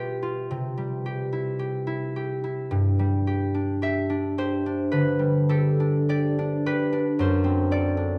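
A concert harp plays alone, ringing and up front in a moderate recital hall, in this graceful, peaceful classical piece cut from a longer work, moving with rubato at around 49-58 BPM in 4/4, tuned to A4 = 437 Hz, as its acoustic tone carries chords from G7/B through C and G to D7/F# at 7.2 seconds.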